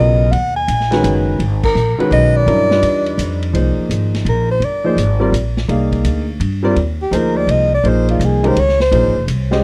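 A breathy, dark soprano saxophone carries the melody up front in this cool, spiritual modal jazz excerpt, its close-miked, whispered tone full of vibrato, soft attacks and scooped notes, with a touch of tape echo trailing behind it. The tune moves at 168 BPM in a swung 3/4, starting in G# dorian and shifting to C minor at 3.5 s, where the saxophone launches into a solo. Beneath it, a warm, intimate concert grand piano comps with deep bass and audible action noise, while a woody, growly upright bass with steel strings plays pizzicato, thumpy and prominent in the mix. A vintage acoustic drum kit enters at 0.3 s and sits further back, offering a punchy kick, a medium-tuned snare, hi-hat, ride and crash with a rolled-off top, and the band hits an accent together at 1.6 s. The sound is a dry, close 1970s-style studio recording with light reverb and a slightly flat tuning of A4 = 435 Hz, giving the whole performance a natural, in-the-room presence.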